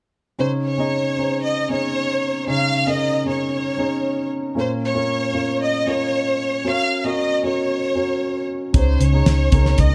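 This piano-driven pop excerpt moves at a straight 115 BPM in 4/4, sitting in Db major with tuning pitched slightly low at A4 = 435 Hz, and its mood is uplifting and warm. From 0.4 seconds an upright piano with a woody tone and long sustain carries the accompaniment up front, while a lush studio violin section sings the melody in a close, expressive ensemble voice with vibrato. The harmony moves from Dbsus2 through Bbm and Gb before returning to Dbsus2 at 8.7 seconds. At that same moment a dry 70s drum kit enters with a fat snare, tight kick and hi-hat, joined by a picked electric bass that sounds dark, round and foam-muted, holding a low Db. Light reverb gives the recording a gentle sense of space, and the clip, cut from a longer piece, breaks off at 9.9 seconds just as the full band arrives.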